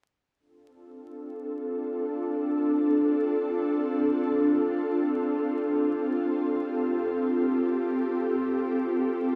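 Drum and bass in free time and D minor, this short excerpt cut from a longer piece sets a frenetic yet nostalgic mood with a single ethereal, airy pad of detuned sawtooth and triangle voices, held up front from 1.2 to 9.4 seconds in sustained chords from Dm7 to G9sus4 with a slow attack, long release, ensemble chorus and built-in reverb, all inside a lush hall reverb dusted with vinyl crackle.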